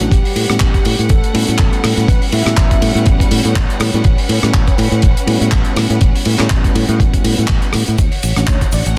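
Swung sixteenths drive this groovy, sunny nu-disco fragment, where a gritty, overdriven electronic kick sits up front over a dry, damped 70s kit of handclaps, hi-hat, ride cymbal and rim click, a bright fingered electric bass holds the low end, a worn, slightly out-of-tune tine electric piano pumps with slapback echo in the background, a lush, distant violin section pumps with bowed sustained chords moving from A13 to Dmaj7, a round, dark octave-layered synth lead with chorus and tape echo carries the melody until 3.0 seconds before briefly returning at 8.5 seconds, and ringing congas and tube shaker join at 8.0 seconds.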